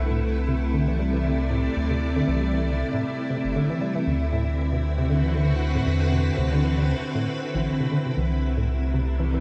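A silky, vintage string machine holds chorused chords over a round, dark analog bass from the opening moment, and a rubbery, resonant acid bass joins at 0.1 s with decaying arpeggios trailing into diffuse ambient delay, giving this intricate, glitchy IDM excerpt a swung sixteenth-note feel and a small-room ambience as the harmony moves from C69 to D13 and back.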